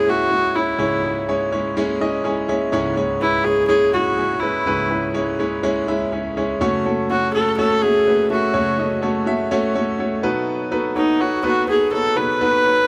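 A straight 4/4 pulse at 124 BPM drives this bittersweet pop passage in C# minor, cut from a longer piece, as a single viola carries the melody with a nasal, reedy gut-string tone and an airy, period-style bow, sitting close and up front. A smooth, vintage grand piano accompanies from C#2 up to G#5, adding a brief fill at 2.0 s and moving from C#m to F#m at 6.6 s and B7 at 10.2 s. A huge ambient reverb with a long tail surrounds the pair, lending the driving 12.9 seconds a spacious glow.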